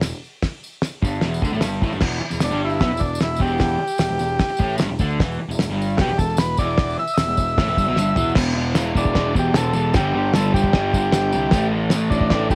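A buzzy, overdriven combo organ with light vibrato carries the melody from 2.4 s in this swaggering, raw garage rock clip, riding over a crunchy double-tracked guitar riff, a round fuzz bass, a cloth-damped thuddy drum kit with a fat snare and dark cymbals that fills at 8.0 s, and a jingly tambourine, all captured as a home cassette recording with light reverb.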